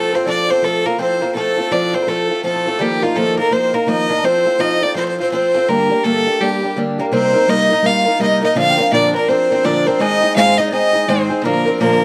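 A clear, earthy fiddle carries the melody up front with light vibrato in this spirited, driving Celtic folk hornpipe at 166 BPM with a swung feel, backed by a boxy picked ladder-braced acoustic guitar with audible finger squeak, a metallic double-strung Irish bouzouki tucked in the background, and a pure, mellow wooden flute sitting distant and very quiet, all under light reverb in a dark production that turns to C minor at 7.1 seconds.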